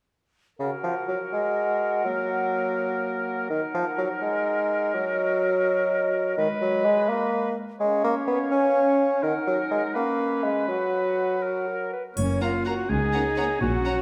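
An up-front, roomy bassoon carries the accompaniment in this playful, mischievous film cue in 6/8 at 83 BPM in F# major, while a clear clarinet, a distant oboe and a pure, mellow flute ensemble play second lines; the bassoon drops out at 11.9 s, and from 12.2 s lush bowed violas, expressive cellos with portamento, rich double basses and a dark-toned triangle enter, joined by background violins on melody and second line and smooth-topped French horns on sustained chords, in a wet scoring-stage reverb.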